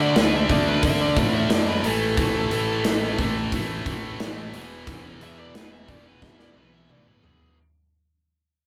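A rough rehearsal-room recording with a small room's reverb carries this anthemic, swaggering hard rock fragment, which fades out across its full length. A warm, bluesy overdriven lead guitar solos over a scooped high-gain guitar riff and a heavier distorted rhythm guitar set further back, while a bright, growly picked electric bass holds the low end through D, A5 and E5. A big acoustic drum kit with a punchy kick and a medium-tuned snare enters up front at 0.2 seconds and closes with a fill from 6.2 seconds.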